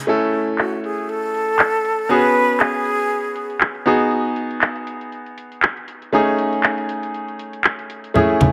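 A bright grand piano with dub echo and a house drum kit of crash, handclaps and warm, filtered hats open this sleek, sensual nu-disco excerpt at 119 BPM with a light sixteenth-note swing, while a breathy concert flute with vibrato and digital delay carries the melody from 0.6 to 3.6 seconds over chords moving from A through G#m7 to Amaj7#11, before low-tuned, thick-skinned congas arrive at 8.2 seconds, all in a moderate plate reverb.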